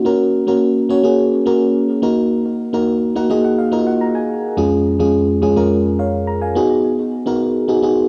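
A glassy, bell-like FM electric piano plays alone in this dramatic, nostalgic pop fragment, moving from Gb through Ebm, Db/F and Abm7. It adds a fill from 2.9 to 4.6 seconds, its up-front, full-bodied sound coloured by chorus, analog delay and cassette tape in a small room on a home cassette recording.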